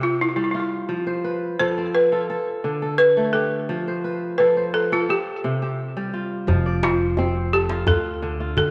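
A straight 4/4 pulse at 86 BPM carries this hypnotic, flowing West African string and xylophone music in F lydian, cut from a longer piece, where an up-front, woody balafon played with hard rubber mallets, buzzing and dark, sings the melody through tape echo over crisp, ringing fingerpicked kora arpeggios cycling through F, Dm and C5 chords, until at 6.5 seconds a thumpy pizzicato upright bass with steel strings and a tight, cracking djembe played with soft hands join inside a wet echo chamber reverb.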